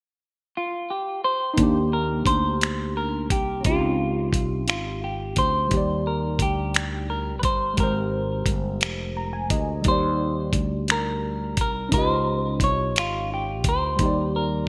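Tender and unhurried, this slow six-eight R&B excerpt in Eb major moves at 58 BPM, with a clean, fingered semi-hollow electric guitar carrying the melody up front under subtle chorus from 0.6 seconds, joined by a worn, slightly out-of-tune tine electric piano through analog chorus. From 1.6 seconds a growly, sustaining fretless bass and a gritty, compressed sampler-style kit of finger snaps, hi-hat and thumpy kick with gated reverb settle in over chords drifting between Ebmaj7, Dbmaj9#11 and Abmaj9, the electric piano adding a brief fill at 8.8 seconds. A moderate plate reverb and bright 1980s-style digital production frame the piece.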